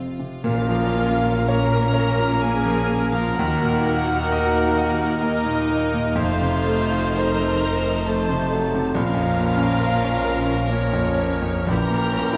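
A wet, roomy scoring-stage sound frames this brooding, passionate romantic excerpt for piano and orchestra in B-flat minor, moving in a rubato 3/4 at around 55-71 BPM through a Bbm, Ebm, F7 progression toward a closing diminished chord. A clear, vintage-toned grand piano carries the melody up front alongside a lush, vibrato-rich violin section, while a very quiet second violin line, a soft-attack viola section, a bowed cello section and a focused double bass section fill out the strings. From around 0.4-0.5 s the woodwinds join in the background (airy, hollow flute, warm oboe, very quiet clarinet and a soft-attack bassoon), with dark, distant French horn chords, bright trumpet stabs marking an accent at the start and a very quiet, dark tam-tam that ends by 4.3 s.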